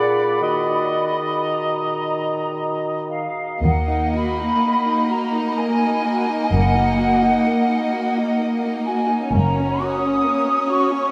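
Classical and elegiac, this yearning excerpt in Eb minor moves in a rubato 3/4 at 54-68 BPM, opening with a pure-toned flute section over a clear oboe, a solo clarinet and a mellow bassoon before strings join the flute at 3.6 s, where a rich, expressive chamber violin section carries the melody above a sul tasto second violin line, a lush viola section, a cello section with portamento in the background and a dark double bass section, all bathed in the cavernous echo of a vast cathedral.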